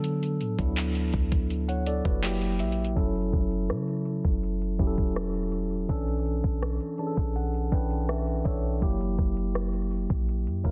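A mellow tine electric piano sits at the front of this short cut from a longer contemporary R&B piece. Its clean tone carries the chords from D6 through F#7b9, F#m7 and Bm11, with fills entering at 1.9 and 6.6 seconds. The mood is longing and sensual, at 82 BPM in straight 4/4, tuned to A4 = 438 Hz. Beneath it, a deep, boomy 808-style bass with a sine-like body, fast attack and decaying notes anchors the low end. The electronic drum kit is equally prominent, pairing a knocking kick with metallic hi-hats, handclaps and rim clicks in a tape-warm character. The sound is dry, shaped by a dense, heavily limited modern master and a low-pass filter that softens the top.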